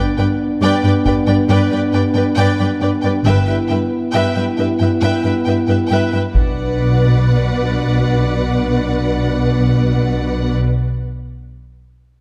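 Heroic and relentless, this cinematic orchestral film-score passage is cut from a longer piece and moves in a steady, straight four. A symphonic violin section sings the melody with smooth, even vibrato, while an intimate, lush studio violin section plays a second line just beneath it. A symphonic viola section holds an accompanying note with soft attacks and expressive portamento, and a mellow French horn section sustains tight, classically styled chords with light vibrato. Up front in the low end, a bowed cello section lays down the bass, joined at 3.3 seconds by an expressive double bass section. A taiko ensemble struck with hard sticks sounds close and dry from 1.1 to 8.1 seconds, set against the moderate reverb of a scoring stage.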